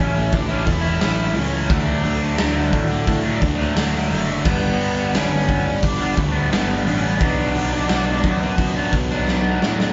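A lightly reverberant, live-in-one-room sound with a dulled top end carries this restless, cathartic slice of quiet-loud alternative rock at 87 BPM in 4/4, moving through A, D, G and B minor. A punchy, up-front acoustic drum kit enters at 0.3 s beneath an overdriven, bright phaser-treated electric guitar riff, a dark distorted fuzz guitar in the background, a very quiet double-tracked fuzz guitar and a warm overdriven fuzz bass, while a very quiet lush vintage string machine holds mellow sustained chords. Meanwhile, a distant bowed cello sings a smooth, vibrato-rich melody until 9.2 s, just before the drums break into a fill at 9.3 s.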